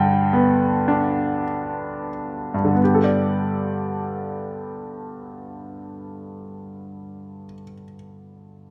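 Bathed in the lingering reverb of a recital hall, this peaceful, warm fragment of a longer classical piece features a solo concert grand piano, bright and worn with deep bass and an up-front presence, playing lyrically in G major and 3/4 at a rubato 41-59 BPM, slowing over the first 2.8 seconds before a second passage shifts to a Gadd9 chord and the piano rings on to 8.7 seconds.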